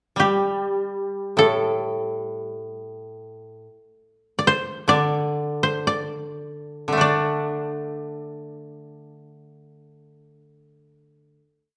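Unfolding in a free, rubato 2/4 that drifts between 49 and 81 BPM and slows from 3.3 to 7.0 seconds, this calm, austere Japanese traditional piece pairs a warm, woody koto singing a modal, ornamented melody up front with a second, brighter koto plucked with fingerpicks on the low strings as accompaniment, both parts sounding from 0.2 to 11.4 seconds and settling at 7.0 seconds into a final chord held within a moderate recital-hall reverb.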